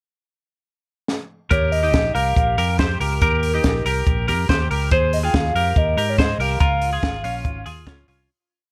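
A compact cocktail drum kit opens the piece with a short fill at 1.1 seconds, its high-tuned snare and punchy kick sounding up front in a small room with a dark, rolled-off top. At 1.5 seconds the band arrives together for a breezy, bright stretch of jangly indie pop. The drums settle into a dance-floor indie beat with off-beat open hats, and a fingered electric bass plays a round, melodic line with slides. A ringing twelve-string electric guitar, clean, compressed and twangy, picks an arpeggiated figure doubled in thirds. Over it a hollow, woody synth lead with a clarinet-like tone carries a motif-based melody in song-like phrases, colored by chorus and vibrato. The harmony moves from Ebadd9 to Ab6/Eb and then to Db, where a fade-out begins at 6.6 seconds, all in a dry, close-sounding mix.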